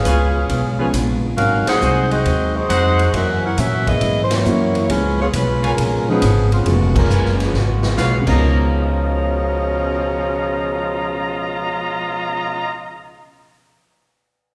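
A warm, up-front saxophone section carries the melody over a woody, growly upright bass from the start of this brassy, energetic big band swing excerpt at 137 BPM in Db mixolydian, joined at once by clear trumpet stabs with vibrato, a dark hollow-body guitar and a roomy, distant drum kit with a boomy kick that plays a fill up to its exit at 8.3 seconds, as the band accents at 1.6, 4.2 and 6.9 seconds, while a mellow concert grand piano settles into the background from 4.5 seconds, all heard from further back in a reverberant recital hall.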